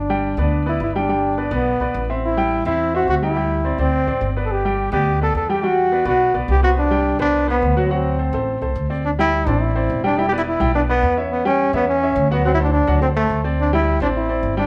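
Salsa with a festive, joyful lift, played by a band together in one large studio whose reverb lends a wet bloom to the whole mix. A bright solo trombone carries the melody up front with pop-style vibrato, while a woody, thumpy pizzicato upright bass on gut strings holds the low end. A clear concert grand piano, intimate and polished with audible action noise, fills in the harmony as the chords move from G and Am7 to a new section at 9.0 s built on D9sus4, Em13 and D7, in this passage cut from a longer piece.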